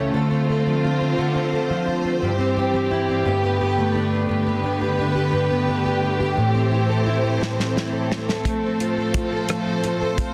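Heartfelt and swaying, this six-eight pop ballad excerpt moves at 58 BPM as a double-tracked, fingerpicked steel-string acoustic guitar with fresh strings and a full-bodied jumbo tone plays over lush, woody bowed strings holding sustained chords through Dm7, C/G and Gadd9 toward Am7 and F/A, and a damped 70s drum kit with a tight kick and rolled-off top joins with a fill at 7.4 seconds, all set in light studio reverb under a dense modern master.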